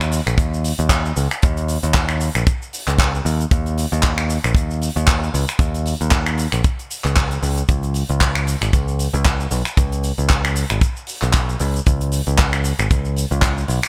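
Cosmic and groovy, this nu-disco passage, cut from a longer piece, moves at 115 BPM in 4/4 with a light 56% swing on the sixteenths. A picked electric bass carries the low end from Ab1 to Eb2, sounding punchy and direct, with tube saturation and sidechain pumping giving it a breathing push. A tight funk drum kit of finger snaps, handclaps, hi-hat and shaker runs from the start, airy and polished under a gated reverb. A dry kick drum joins at 0.4 seconds and sits as the loudest element, firmly up front. The overall mix has little room reverb and a bright 1980s-style digital sheen, keeping the groove close and crisp.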